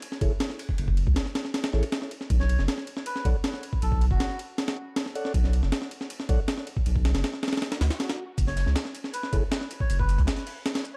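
A deep, saturated sub bass sits up front from 0.2 s, driving this raw, dark drum and bass and jungle excerpt at 158 BPM alongside a compressed, sampler-style breakbeat kit with a thumpy kick, high-tuned snare and ride cymbal in studio reverb. Soft, flute-like tonewheel organ stabs with key click turn through a slow rotary speaker and dub echo over F#m9 and Bm9, while a reedy, nasal melodica carries a breathy melody, also in dub echo. After an electronic swell in the background, a crunchy, filtered second breakbeat kit of hi-hat, shaker and snare enters at 8.4 s as the harmony settles on F#5, all inside a small room and a dark production.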